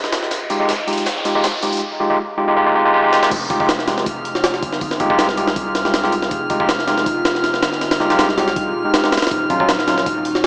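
A swung jungle break at 160 BPM drives this frenetic, atmospheric drum and bass excerpt in F minor, its pitched-up, compressed sampler kit thumping up front with a high-tuned snare and a large-room ambience, while a very quiet, crunchy breakbeat kit with tambourine and an electronic riser fuel the build-up before the drop at 3.3 s. Barky, overdriven electric piano stabs with 12-bit grit and dub echo sit forward over a warbling, nostalgic tape-like pad holding Fm9 and later Ebm9, as a deep, thick sub bass with tube saturation rumbles in the background. From 4.0 s a calm, glassy texture of drifting overtones shimmers high above, all wrapped in plate reverb, vinyl crackle and a small-speaker tone.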